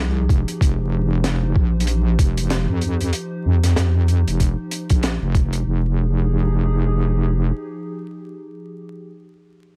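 A heavy, square-wave wobble bass, saturated and up front, opens this funky, playful glitch hop excerpt with swung sixteenths, joined at 0.3 seconds by a gritty, pitched-down sampler kick and a crunchy breakbeat kit of hi-hat and high-tuned, dark snare that stop near 5.6 seconds, while a warbly, nostalgic tape-like pad with detuned, wave-folded tones and a slow attack holds sustained chords beneath vinyl crackle in a dry room, moving from F7sus2 to Fm9 at 5.7 seconds.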